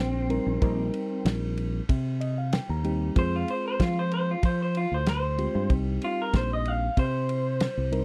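A slightly broken-up electric guitar through a small old amp plays a clean, picked solo with slapback echo over growly fingered electric bass from the start, joined at 0.3 seconds by a warm soul drum kit with punchy kick, fat snare and dark cymbals and by a reedy electric piano that adds a fill from 1.9 to 3.2 seconds, in a mournful, smoky straight-eighth soul blues at 94 BPM in C minor that moves from Cm to Fm and back, recorded dry and close in a 1970s studio style and cut from a longer piece.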